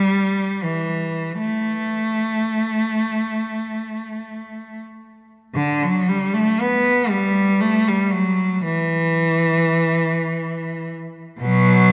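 A single bowed cello carries this brief classical passage alone, its rich, focused tone sitting up front with vibrato and a smooth top end. The mood is lyrical and serene, unfolding in 6/8 with a free, rubato feel at a slow pulse of 21-45 BPM counted in dotted quarters. The line stays within a compact range between B2 and B3, giving it a rich, singing weight. A wet church reverb with a 3.0-second decay surrounds the player, lending the notes a long, resonant halo. The music falls into two sections, with the second beginning at 5.5 seconds, and the clip, cut from a longer piece, ends at 11.9 seconds.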